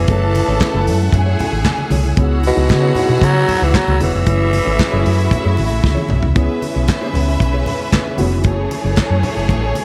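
A straight 4/4 disco groove at 115 BPM drives this joyful, glamorous excerpt, anchored by a round, up-front hollow-body bass and a muffled, lo-fi soul drum kit with tight kick, handclaps and gated reverb, while distant, low-tuned congas sit very quietly beneath. A raspy, growling tenor saxophone carries the melody up front until 5.8 s, when a drum fill leads into the next section, and a lush, bowed violin section sings a second line alongside a clear string section's sustained chords. In the background, a worn, slightly out-of-tune tine electric piano with ensemble chorus and a dark, clean electric guitar fill out the F#m9 to C#m7 changes, all set in light studio reverb.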